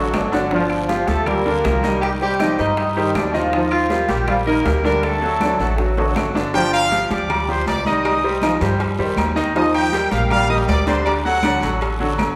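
Fiery and passionate, this salsa excerpt opens with a mellow, punchy horn section carrying the melody from a distance, while a trombone section adds a low second line and a clear, polished baby grand piano supplies the accompaniment over a dark, thumpy pizzicato upright bass with gut strings. At 6.5 seconds a bright trumpet section takes over the melody, riding above damped, high-tuned congas, ringing metal-shell timbales and agogo bells, a raspy guiro, and very quiet tight bongos and cowbell alongside woody claves. Drum fills mark the opening and the lead-in at 5.4 seconds, and a wet recital hall reverb gives the sound a spacious, churchlike glow.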